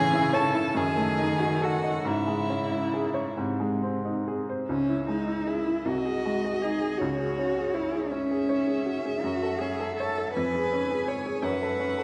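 Elegiac and solemn, this slow, romantic movement for piano quartet unfolds in C# minor at 45-56 BPM, counted in dotted quarters in a rubato 6/8. The first violin carries the melody with a smooth, even, bowed tone, vibrato and a silken top. Beneath it, the second violin and the cello each shape an expressive second line with soft attacks, vibrato and portamento, and the cello sits up front with a warm voice. The baby grand piano supplies the accompaniment with a clear, slightly worn, natural sound whose notes decay quickly, also placed up front. All four instruments play throughout this short passage cut from a longer piece. A wet concert-hall reverb adds a long, resonant tail. After an opening section built on chords such as Amaj7, D#dim/F# and C#m/G#, a second section begins at 4.7 s and moves through C#m, G#/B#, F#m7 and C#/E#.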